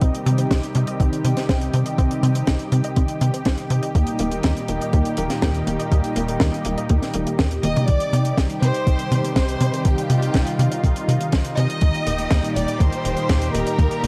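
A danceable, bittersweet italo disco groove in C minor at 122 BPM opens with a thumpy, overdriven electronic kick and a dry funk kit with a high-tuned snare, driven by a punchy, saturated sawtooth sequencer bass under a thick, airy pad with chorus and shimmer reverb. Detuned plucked arpeggios with analog delay and dark, brassy synth stabs sit in the background as the chords move between Cm and Eb. With a drum fill at 7.6 seconds, an expressive chamber violin section enters with the melody, bowed with vibrato, over a gritty hardware sound flecked with vinyl crackle.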